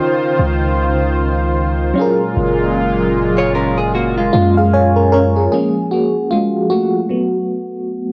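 This dreamy, tender contemporary R&B excerpt in F# major opens with an FM electric piano, its tremolo and phaser giving a shimmering, up-front accompaniment, layered over a smooth, detuned sawtooth pad with slow attack, vintage warble and chorus. A deep, mellow 808-style bass enters almost at once, its sine tone sustaining long under the chords. The tempo is a relaxed 76 BPM in 4/4 with a light swing on the sixteenths, moving through lush major-ninth harmony from C#maj9 to F#maj9. At 3.4 seconds a clean, compressed electric guitar recorded direct adds picked arpeggios soaked in lush chorus, and from 4.3 seconds the piano plays a short fill. By 5.5 seconds the pad, bass and guitar have fallen away, and the electric piano carries on by itself in a solo over Gbmaj9/F and Gbmadd11 harmony. Cassette tape coloring on the piano, pad and guitar and a moderate studio reverb give this home recording on cassette an intimate, hazy character.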